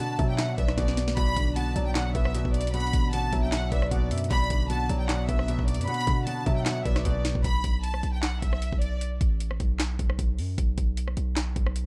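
Bathed in digital ambience, this melancholic, hard-hitting hip hop and trap excerpt in B minor moves at 153 BPM with a half-time 4/4 feel, as a lush, distant violin section with vibrato carries the melody through digital delay over a velvety, chorused synth lead in the background, a smooth, vintage grand piano and a very quiet, ethereal pad until the lead and pad drop away at 7.4 s, the piano just after at 7.5 s and the strings at 9.0 s, leaving the punchy, heavy 808-style bass and an up-front trap kit of knocking kick, sharp snare, metallic hats, claps and rim clicks to drive on to 11.9 s.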